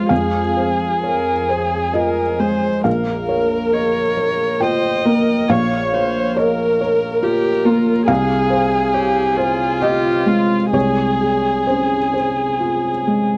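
Neoclassical piano and strings in a fragile, melancholic mood, moving slowly in a rubato three-beat pulse through this short fragment of a longer piece. A single con sordino violin sings the melody up front with a dark, veiled tone and vibrato, while a close solo viola with a soft attack supports it quietly. A felt-muted upright piano, mellow and intimate with audible action noise, carries the accompaniment. The sound is a dry, close 1970s-style studio recording in a small room.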